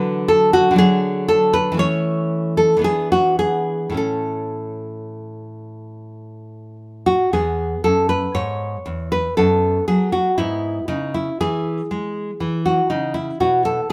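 Classical baroque-style dance in 3/4 for solo nylon-string guitar, its dance-like, radiant character shaped by a flexible rubato feel. The fingerpicked guitar sits up front with a warm, deep classical tone, moving through D, A/E and E7 to rest on A before shifting toward E at 7.3 s and closing this short cut on B5 at 13.4 s. A light reverb and live-room sound surround the playing.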